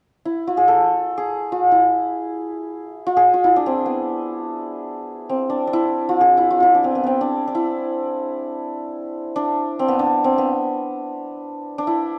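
A lone acoustic santur enters at 0.3 s, its hammered strings bright, shimmering and ringing as it plays up front in this passionate, festive excerpt of Persian modal music. The solo stays between B3 and A4 and carries on until the fragment is cut off at 12.2 s. A moderate recital-hall reverb surrounds the instrument, and the overall production leans dark.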